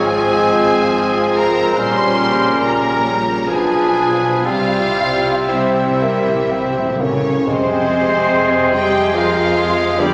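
A spacious, reverberant scoring-stage sound surrounds this serene, tender passage from a slow romantic movement for symphony orchestra in F minor, moving in a rubato 3/4 at around 58-74 BPM. A focused violin section sings the melody with vibrato and a smooth top, while a second violin line sits softly in the background, even and smooth. Woodwinds add second lines: a distant, roomy clarinet, a pure, hollow silver concert flute heard very quietly, and an oboe with light vibrato. A bassoon with vibrato and a clear, intense viola section fill in the accompaniment. Dark, distant trombones and tight, mellow French horns hold sustained chords, a vintage-toned trumpet section adds stabs, and rich, close cellos join lush double basses on the bass. The harmony passes through diminished chords to C major, where timpani played with medium mallets enter at 4.5 s for a fill, before the music settles back on F minor as a new section begins at 7.5 s.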